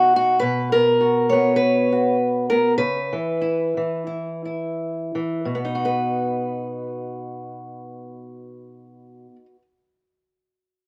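Recorded outdoors with light reverb, this nostalgic folk excerpt features a solo fingerpicked steel-string acoustic guitar, dark and up front with a slapback echo, swinging gently in 4/4 as it slows between 0.4 and 5.4 seconds, moving from B5 through C#m7 before settling on B at 5.4 seconds.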